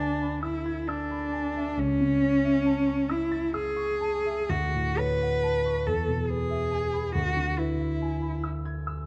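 Close, detailed microphones capture a recital hall with moderate reverb, giving this brief romantic fragment for cello and grand piano an intimate, up-front presence. The mood is serene and tender, unfolding slowly at roughly 40-47 BPM in a rubato 6/8 counted in dotted quarters. A single bowed cello carries the melody between C#4 and B4, its tone warm, smooth and even, with vibrato and a softened top, until it falls away at 8.4 seconds. Beneath it, a dark, mellow concert grand with a vintage character and deep bass supports the line across a range from C#2 to A6, sounding on to the close at 9.1 seconds. The harmony drifts from E7/D through A/C# and Dmaj7 to E before returning to E7/D.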